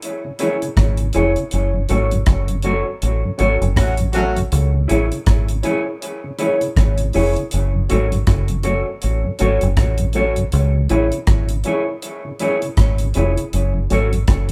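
A round, foam-muted dub bass anchors this serious, hypnotic roots reggae cut at 80 BPM in C# minor, over a dry, up-front drum kit with a tight kick, hi-hat and rim click, a dark, woody upright piano playing stabs through dub echo, a clean fingered electric guitar bathed in spring reverb and echo, a mellow tonewheel organ with chorus vibrato and slow rotary speaker sitting in the background, and a brief, smooth horn section in octaves at 3.8 seconds, all heard as a band playing live in one lightly reverberant room.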